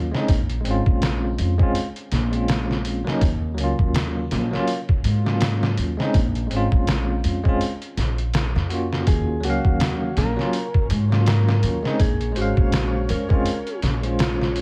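Hypnotic, smoky trip hop with a swung groove, built on a bell-like tine electric piano under tremolo, tape echo and a filter sweep, a woody, dark pizzicato upright bass, and a gritty, pitched-down sampler-style drum kit with a thumpy kick, all dry and up front. A slightly broken-up electric slide guitar joins them at 9.1 seconds, carrying the melody through dub echo and 12-bit grit, and a very quiet, reversed, dreamy granular texture enters at 10.1 seconds in this excerpt from a longer piece.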